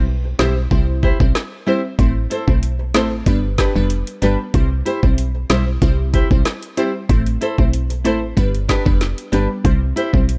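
Bright, fingerpicked flamenco guitar arpeggios weave through this sultry, hypnotic dancehall excerpt at 94 BPM, alongside an up-front electronic kit with a knocking kick, woody snare, rim click and metallic hats, a soft, round FM bass, and a glassy, detuned wavetable pluck colored by chorus and phaser, all moving through a C, Am, G progression in a dry, close mix.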